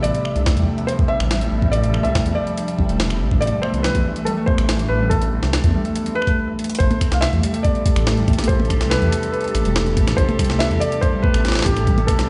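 A deep, rumbling detuned saw bass and a gritty, compressed jungle-style kit of finger snaps, hi-hat, snare and toms anchor this eerie, melancholic IDM cut at 142 BPM in A minor, joined from 0.5 seconds by a thumpy, pitched-up electronic kick. Above them a felt-muted upright piano carries the intimate melody with audible action noise and delay, while a Celtic harp rings out fingerpicked arpeggios and a warbling, nostalgic tape-like pad holds chords through chorus and phaser, moving from G7sus4 to Fmaj7. A faint flickering, granular texture hovers on top; after a brief stop and a drum fill near 6.6 seconds, the music settles onto Am9, all within a big, reverberant room sound with a dulled top end.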